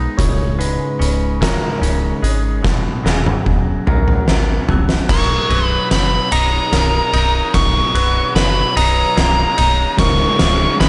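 A lightly reverberant mix with a softened top end carries this hopeful, cinematic post-rock excerpt in B major, moving in a slow 6/8 at 49 BPM as a clean, twangy twelve-string electric guitar arpeggiates through analog delay over a deep, round, foam-muted dub bass, with a slightly broken-up small-amp guitar adding high arpeggios in the background. An oversized, low-tuned drum kit sits up front, its punchy kick and fat snare set in a bright stone room with a gritty, saturated edge, and drum fills begin at 2.6 seconds. At 5.1 seconds a build-up takes hold as a nasal, overdriven lead guitar with a parked wah sings a high melody through delay over a Bmaj7, and a compressed fuzz guitar riff slips in low in the background at 10.0 seconds.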